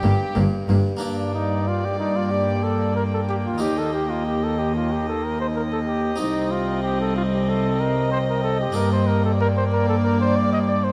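A straight 4/4 pulse at 93 BPM drives this dramatic baroque-style concerto movement in G minor, cut from a longer piece, with a mellow, close-miked solo trumpet carrying the melody over chords moving from Gm through Eb and Cm back to Gm. Period-style, gut-string sections surround it: a very quiet violin section playing a melodic part on a high G, a second violin section playing a rich, smooth-topped second line, a viola section in the background, and a nasal cello section up front on the bass, joined only until 0.8 s by a double bass section. A brilliant harpsichord with octave strings fills in the accompaniment, and the ensemble sits in a moderate concert hall reverb.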